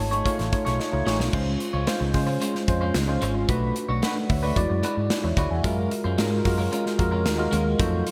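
Polished 1980s jazz-funk pop with a slick, urban mood at 111 BPM, this excerpt opens on a tine electric piano fill with analog chorus and a drum fill from 0.8 s, before settling at 1.3 s into a groove over Dbmaj7, Bm7, E9 and Gbmaj9. The up-front electric piano carries the accompaniment while a twangy, scooped, compressed clean electric guitar with subtle chorus plays a picked riff, and a dark, round, punchy fingered bass anchors the low end. A modern studio kit with a tight kick, medium-tuned snare, hi-hat and crash is bathed in gated reverb, all set in a lush hall within bright digital production.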